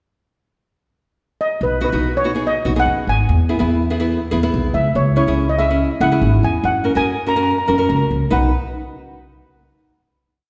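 A carefree, bouncy calypso that opens with a pickup bar, during which the steel pan enters at 1.4 seconds with a motif-based lead of song-like phrases, its tone metallic and shimmering yet dark and smooth under medium rubber sticks. Pizzicato upright bass on steel strings joins at 1.6 seconds with a woody, syncopated figure, and a small, fingerpicked nylon-string guitar adds rhythmic triad chords, with all three parts held up front. A wet reverb places the trio in a church or concert hall, and the verse comes to rest on a final B chord at 8.3 seconds.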